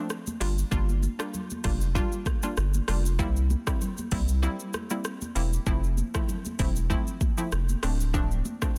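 Afrobeats in G dorian at 97 BPM with a lightly swung sixteenth feel, this mellow, sultry excerpt moves through Gm7, C7, Fmaj7 and Dm7 over about 8.8 seconds. A deep, thick saturated sub bass and an electronic afro-pop kit with a deep kick, metallic hats, rim click, shaker and a softly clipped snare sit up front. A round, detuned analog pluck with chorus and a filter sweep carries the accompaniment, while high-tuned, close and dry congas with a thin skin are struck with hard hands in the background, all in a dense, heavily limited modern master with little reverb.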